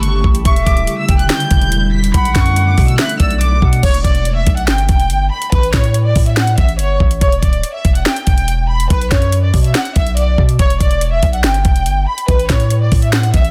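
A half-time trap groove at 142 BPM drives this brooding, melancholic hip hop passage in E dorian, with an up-front electronic kit of knocking kick, sharp snare, metallic hi-hats, finger snaps and crash cymbal over a deep, mellow sine 808-style bass that sustains and decays beneath it. A lush, bowed studio violin section carries the smooth, vibrato-laden melody with delay throughout. For the first 3.8 seconds, a pure-toned concert flute with delay adds a soft-attack second line while a glassy, ethereal FM pad holds slow-swelling chords through chorus and reverb, all set in digital ambience and a dense, heavily limited modern master.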